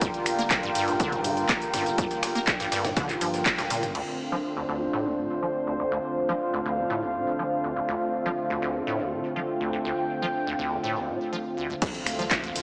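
This gritty, driving acid house excerpt opens with a drop, where a punchy, tape-flavoured analog drum machine sits up front with hi-hat, ride, crash, toms, shaker, handclaps and finger snaps. An up-front electronic kick and a very quiet, compressed breakbeat sampler kit with a gritty snare and hi-hat play alongside it from the start, and a deep, thick sine sub bass in the background joins a moment later. Throughout, a squelchy, hollow square-wave acid bass riff with resonant filter plucks, tube saturation, lush chorus and digital delay pumps against a smooth, detuned sawtooth pad holding sustained chords with chorus and tremolo, moving from Gm7 to Dm7. Above them a warbling, nostalgic lo-fi pad of sawtooth and triangle tones drifts with slow attacks and long releases, mellow under its chorus and built-in reverb. The drums and sub bass drop away after about 4 seconds, leaving the pads and acid line to carry the middle stretch. 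At 11.8 seconds the beat returns alongside a very quiet electronic impact, with the sub following just after, all of it bathed in a lush hall reverb yet heard through a small speaker tone.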